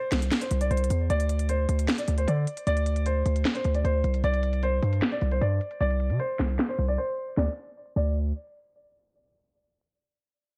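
A dark, low-pass filtered production with vinyl crackle frames this eerie, menacing hip hop and trap piece at 153 BPM in a half-time feel, moving from C to Csus2. A mellow, vintage-toned concert grand piano carries a smooth, short-sustained melody through delay. A heavy, aggressive distorted 808-style bass with a fast attack and a sharp-snared, crisp-hatted electronic kit sit up front, while a filter sweep runs from 1.1 to 7.4 seconds, broken by a pause at 7.0 seconds.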